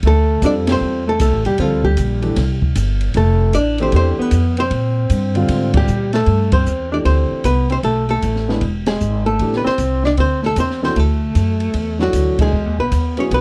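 A swung 4/4 pulse at 154 BPM drives this relaxed, playful small-group jazz excerpt in C major, rooted in the bop tradition. An up-front pizzicato upright bass with a woody tone and steel strings sits forward in the blend, while an open drum kit, recorded in a small room, adds dark cymbals on hi-hat and ride, a high-tuned snare and a boomy kick. A clean, picked hollow-body archtop guitar with a dark, compressed electric tone carries the melody from 0.1 seconds, and a breathy alto saxophone plays a second line beneath it with vibrato and a close-miked subtone. A natural-sounding grand piano enters at 0.4 seconds to fill in the accompaniment as the harmony moves from Dm9 through Fmaj7 and Bb9 before shifting toward C6, Am7 and a closing Emaj7. The band lands shared accents at points such as 6.5 and 12.3 seconds, all framed by light reverb and a dark overall production.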